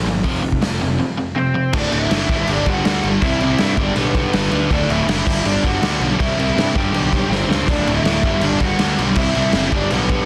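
Upbeat, rowdy punk rock excerpt at 162 BPM in a straight 4/4, where a bright overdriven electric guitar and a hollow-bodied semi-hollow guitar drive riffs from the start alongside a growly fuzz bass, a saturated, punchy garage drum kit with a rolled-off top kicks in at 0.2 seconds, a dark lo-fi lead guitar through a small cranked amp carries the melody from 1.4 seconds, and a very quiet double-tracked fuzz guitar joins the riffing at 1.7 seconds, all in a dry, dense, heavily limited mix with a drum fill around 7.3 seconds.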